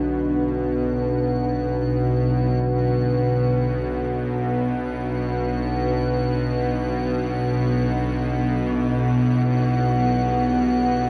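A string-like, tense bowed drone sits up front from the first second, low in the register, while a dark analog pad fades in with deep, nasal chords under lush chorus and a faint icy glass pad hangs crystalline and airy in the background. This desolate, ominous dark ambient excerpt drifts in free time in B minor, moving from Bm to Emadd9/B at 7.6 seconds, as a very quiet bronze singing bowl rings with metallic, slowly beating arpeggios that stop at 1.6 seconds and return at 8.7 seconds. A huge, wet reverb and worn cassette tape with warbly pitch drift give the whole fragment a decayed, haunted air.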